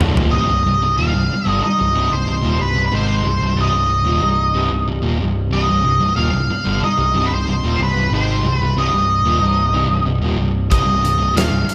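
This angsty, cathartic slice of quiet-loud alternative rock opens with a short fill on a big, dark-sounding acoustic drum kit, over which a thick, bright fuzz guitar riff and a growly, overdriven picked bass are already sounding. At 0.3 seconds the music settles on C minor at a steady, straight 92 BPM in 4/4, and the drums fall away while an up-front octave-fuzz lead guitar enters with a distorted, shadowy melody in a high register. Beneath it, a clean electric guitar plays compressed arpeggios with an analog chorus, sitting in the background of the mix. The drums return at 10.7 seconds with a fat snare, a punchy kick, hi-hat and toms. A moderate concert hall reverb gives the whole band a spacious, roomy sound, and the passage is cut from a longer piece.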